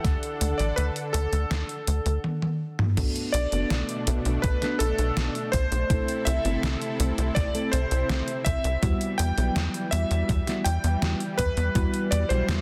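A cinematic synthwave piece at 82 BPM in E minor opens at once with a clear electric grand piano carrying the melody through a delay, set over a lush, detuned unison pad whose sustained chords breathe with chorus and sidechain pumping. Beneath them, a tight, punchy sequencer bass sits up front with a plucky, wave-folded bite, while an electronic kick with a thumpy, overdriven weight and a detuned 8-bit drum machine with a fat snare, hi-hat, toms and crash give the groove a gritty, small-room character. A drum fill from 2.2 to 3.0 seconds leads into a new section, where a mellow FM electric piano enters with round, dark stabs softened by chorus. Just after, at 3.3 seconds, a very quiet synth bell adds a pure, gentle second line in the same register as the piano melody. The harmony moves from D through Bm7 and Am to Emadd9, and the dense, heavily limited mix with light reverb gives this nocturnal fragment of a longer track a polished, modern sheen.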